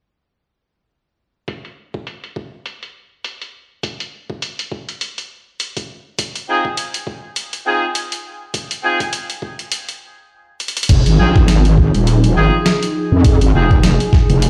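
Glitch hop with a gritty, playful swing, cut from a longer piece, where a thumpy, pitched-down electronic kick sits up front beside a tape-warm, sampler-style boom bap kit whose filtered hi-hat, crash cymbal and medium-tuned snare enter at 1.5 seconds. Bright, punchy vintage horn stabs arrive at 6.5 seconds, pumping against the beat and trailing dub echo. At 10.9 seconds a heavy, detuned wobble bass with tube saturation and chorus pushes forward alongside a smooth, slow-attack analog pad roughened by 12-bit grit, all played through a big sound system in a bare stone room.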